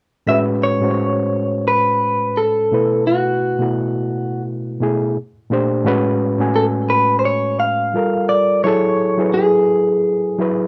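Smooth and warm, this short R&B passage moves with a gently swung sixteenth-note feel over lush chords such as Amaj13, B7sus4 and F#m9. A picked electric guitar through a small old amp carries the melody from 0.3 to 10.7 seconds with a compressed, slightly broken-up tone, while an overdriven reed electric piano fills in gritty, reedy accompaniment through a combo amp. Both parts sit forward in a rough home-demo mix touched with light reverb.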